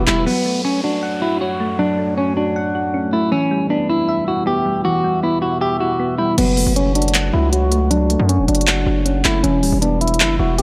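Melancholic yet hard-hitting, this short trap and hip hop excerpt moves at 157 BPM with a half-time feel in F# phrygian, cycling between F#m and Em. A clean semi-hollow electric guitar carries the melody up front, its hollow-body tone softened by spring reverb and a low-pass filter, while mellow electric-piano-like synth keys with chorus supply gentle, round accompaniment throughout. A brief hit of distorted 808 bass and drums opens the piece before a downlifter sweeps through, and a deep, moody ambient pad with chorus and reverb sits in the background from 1.0 to 6.3 seconds. At 6.4 seconds the saturated, aggressive 808 bass and the trap kit, with crisp hi-hats, handclaps and crash cymbal, return up front. The production is dark and lightly reverberant.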